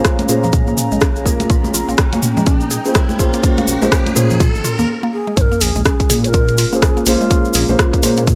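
Earthy and spiritual, this afro house excerpt at 124 BPM in Bb dorian swings its 16ths as a punchy, up-front electronic kick, a house kit with bright hats, rim clicks and toms, a grainy egg shaker and thin, high-tuned congas (heard until 4.5 s) drive a build-up, while a filter sweep opens a woody, mallet-like synth pluck and an electronic riser climbs toward a brief break. A moody analog pad holds a Bbm7 chord in the background, a muffled, boxy felt-muted upright piano adds stabs with tape echo, and a rumbling detuned saw bass pumps beneath, all three breathing with sidechain pumping. A breathy bamboo bass bansuri, unsteady and warm with vibrato, enters at 5.1 s to carry the melody, and at the drop at 5.4 s a sub drop hits, all within a dry, gritty small room.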